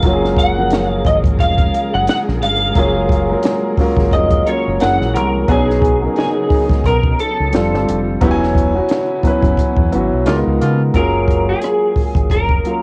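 A twangy, slightly broken-up electric guitar carries the melody over an up-front concert grand piano, a round, dark fingered bass, a compact cocktail kit with a high-tuned snare and punchy kick, and background strings with expressive portamento in this soulful, smooth 88 BPM neo-soul R&B groove in F# major with a gentle swing, lo-fi cassette tone and light reverb, as the band accents from 8.2 seconds and a brief horn stab lands at 10.3 seconds.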